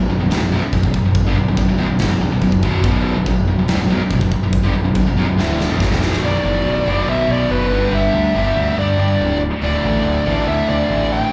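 This sounds like a live gig heard through the venue's PA, with club reverb around a short passage cut from a longer heavy metal piece. The mood is epic and aggressive, at 142 BPM in a straight 4/4 in B minor, starting on B minor and later moving through G5 and D5. Up front, a double-tracked, high-gain guitar riff with a bright edge and slapback echo plays from the start alongside a fuzz-drenched, overdriven picked electric bass that sounds punchy and direct. A big acoustic rock kit, heard in a stone-room ambience with a medium-tuned snare, thumping kick and china cymbal, drives the first half and ends with a fill that starts at 5.4 seconds. At 6.2 seconds the drums drop out and a high-gain lead guitar enters. It plays a melody with a warm, distorted tone and its own slapback echo above the riff and bass.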